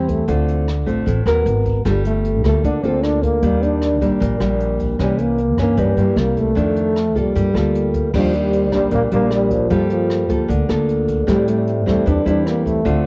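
This home cassette recording has a light reverb, and it captures a short cut from a longer bossa nova at 153 BPM with a wistful, melancholic mood. A dark, breathy trombone carries the solo melody in a jazz style, with scooped notes and a smooth top, colored by the cassette tape. Up front, a warm, thumb-plucked nylon-string guitar plays classical-toned accompaniment, while a woody, thumpy pizzicato upright bass with steel strings sits low and close. A jazz brush drum kit, placed further back in a small, natural-sounding room, brings dark cymbals, hi-hat, rim clicks and a boomy kick under its own tape coloring. Throughout, the chords move through rich sevenths and ninths such as Ebmaj7, Gm9 and C7b9. At 8.5 seconds a warm, clean tine electric piano joins very quietly through a combo amp, adding a faint upper layer.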